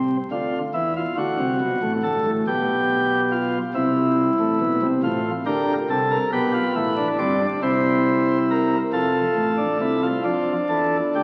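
A chamber organ's principal chorus opens at once through the crackle of a very old 78 rpm record, its full, up-front voicing touched with a crisp chiff at the start of each note. This is a lively, elegant baroque-style fugue in three parts, moving in a lilting 6/8 with a straight feel. The lone organ spans a deep pedal register up to the treble, carrying the harmony from C through D7, G/B and G7 before settling on F and turning to D minor near 10.3 seconds. A wet church reverb lets each chord bloom and hang in the air, while the surface noise of the old disc lends a dusty, antique patina. Lasting about 11.2 seconds, the passage is cut from a longer piece and stops mid-flow.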